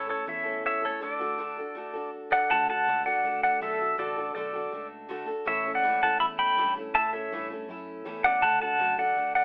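A clean pedal steel guitar sings the melody up front from the first moment, its fingerpicked, compressed tone full of slide and volume swells, over a bright, full-bodied picked acoustic guitar with fresh strings and a dark, round, foam-muted electric bass in the background. This short honky-tonk and classic country cut has a down-home, nostalgic feel, moving between A and D chords at a brisk straight pace. The band sounds as if playing live in one room, with a telephone-like filter and a wet studio reverb.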